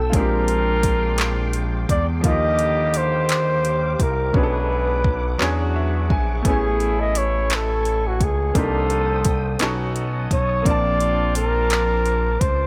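A breathy flugelhorn carries the melody up front in this tender, slow six-eight R&B excerpt, its soft attack, light vibrato and whispered, intimate tone sitting close to the listener at 57 BPM. Beneath it, a smooth synth bass with a sawtooth and square-wave character and a moving notch holds the low end with sustained, mellow notes. A clear grand piano with a worn, natural quality plays the accompaniment and adds a brief fill between 5.4 and 6.4 seconds, while a tonewheel organ stays in the background with clean sustained chords shaped by chorus vibrato and a slow rotary speaker. A vintage horn section with octave doubling punctuates the texture with stabs washed in tape echo. The electronic, produced drum kit pairs a soft kick with metallic hats and handclaps, the hi-hats falling silent from 4.3 to 6.4 seconds. The harmony drifts through rich extended chords such as Bb13, Ebmaj9, Amaj7 and Cm9, and the dry, close sound leaves every detail intimate and present.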